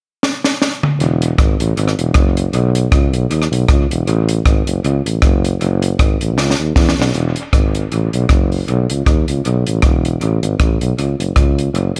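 A compact cocktail drum kit opens with a fill at 0.2 seconds, its high-tuned snare, punchy kick, rim click, hi-hat and toms sounding dry and up front, touched with dub echo. From 1.0 seconds a mellow tuba carries the bass line in a pop style, with light vibrato, scooped notes and a smooth top, sitting forward with little reverb. This upbeat, bouncy ska excerpt has a lightly swung feel, and a second drum fill at 6.4 seconds leads into a new section.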